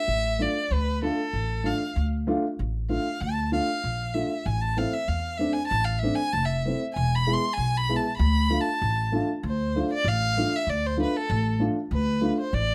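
A bowed, vibrato-rich violin opens this bittersweet yet festive klezmer excerpt in D dorian sharp4 at 97 BPM in a straight 2/4, carrying a smooth, up-front solo melody until 9.4 seconds over a woody, plucked upright bass and a dark, boxy upright piano with long sustain, as the harmony moves from Dm through Am and E back to Dm in a moderate studio reverb.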